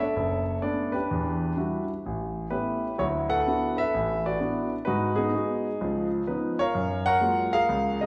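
A concert grand piano carries this short solo jazz piece on its own, its warm, intimate, natural tone marked by deep bass, long sustain and audible action noise, with an up-front presence. The mood is warm and playful, moving at 127 BPM in 4/4 with a swung eighth-note feel, and the instrument is tuned to A4 = 439 Hz. Across its 8.1 seconds the piano ranges from F#1 to F#5, moving through Bm9, Em9, A9 and D69 before shifting to G#m7 at 4.9 seconds, then C#9, and settling on F#maj9. A wet recital hall reverb lends the sound a spacious, resonant ring, as if heard in a church or concert hall. The passage is cut from a longer piece.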